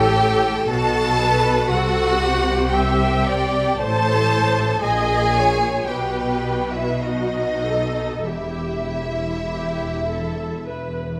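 A melancholic, solemn slow romantic movement for string orchestra opens with the full ensemble at once, an up-front violin section singing an expressive melody over a focused, smooth-topped second violin line, distant viola accompaniment and a lush, even cello section joined in the bass by the double basses, all bowed with vibrato in a rubato 3/4 and set in moderate recital hall reverb captured by close, detailed microphones, cut from a longer piece.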